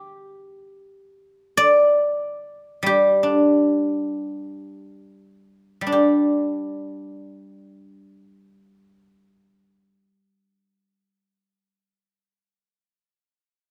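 Chinese traditional solo plucked-string music in free time, pastoral and flowing, heard as a brief passage cut from a longer piece. A lone guzheng, played with fingerpicks between G3 and D5, carries the whole recording with a bright, silvery, ringing tone, set up front by close, detailed microphones in a nearly dry space. The opening phrase slows down over its first 5.9 seconds before a second section begins and runs to 11.4 seconds.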